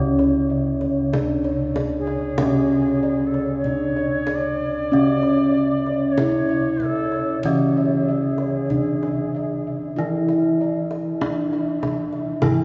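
A slow, straight 4/4 pulse at 48 BPM carries this stately, shimmering Javanese gamelan excerpt in C# pelog, where a mellow, up-front bronze metallophone leads the melody over a bright horn-mallet metallophone accompaniment, a very quiet metallophone and round bossed gongs add arpeggios, deeper bossed gongs hold the bass, a close and dry kendang drums throughout, and an airy, unsteady bansuri with vibrato sings a second line from 2.0 to 10.2 seconds, all set in a cathedral-like reverb.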